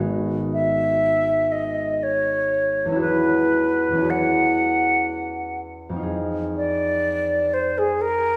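This classical, impressionist duo for flute and concert harp has a mysterious, hazy mood, moving in a flexible, rubato three-four. The concert harp opens alone at the start, its bright, thumb-plucked tones ringing across a deep span of the instrument as it supplies the accompaniment. At 0.5 seconds the silver concert flute enters with the melody, its airy, straight tone and crisp attack sitting slightly above the harp in level within a fairly narrow upper register. The harmony drifts from G#m7 through E69 to Fm7, lending the passage its shadowy, unresolved colour. A wet scoring-stage reverb and a listening position further back in the room wrap both instruments in a soft halo, and this short excerpt, cut from a longer piece, ends at 8.4 seconds.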